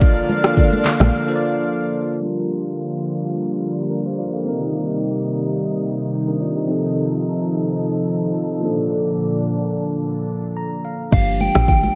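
A bell-like, up-front tine electric piano carries this mellow, smooth afrobeats excerpt in G minor at 108 BPM, playing throughout and adding a fill just before the drums, log drum bass and round, warbling FM synth lead return at 11.1 seconds. At the start, that lead, treated with chorus, tremolo and analog delay, states the melody over a distant, roomy horn section, a punchy woody log drum bass and an electronic drum kit with deep kick, metallic hats and handclaps, with damped congas joining in the background at 0.3 seconds, before the drums, bass and congas fall away at 1.1 seconds for a break. A detuned sawtooth pad with lush chorus holds chords moving from Bbmaj7 through Gm7, Cm7 and F7 under a long filter sweep, and the dreamy mix is soaked in hall reverb and softened by a low-pass filter.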